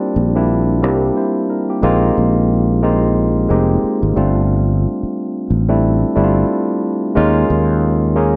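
Swung sixteenths in 4/4 carry this smooth, relaxed neo-soul R&B excerpt, where a barky, bright tine electric piano, lightly overdriven through a combo amp, comps through C9sus4, Bb9sus4, G9sus4 and Eb9sus4 chords as a growly, punchy sustaining fretless electric bass joins at 0.2 seconds, both sitting up front in a dry, close 1970s-style studio sound.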